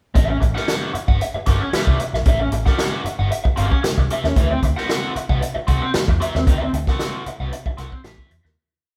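A straight 4/4 funk groove drives this short, playful and energetic breakdown, with an acoustic drum kit up front playing a syncopated pattern full of ghost notes on hi-hat, medium-tuned snare and a punchy kick. A dark, foam-muted fingered electric bass lays down a round, syncopated riff anchored on the downbeat, dotted with muted ghost notes and chromatic approach notes, while an overdriven garage guitar, also up front, scratches out sixteenth-note rhythm through a wah pedal over an A9 that moves to D13 at 4.4 seconds. The band plays live together in a moderate stone room, and the piece fades out from 6.5 seconds.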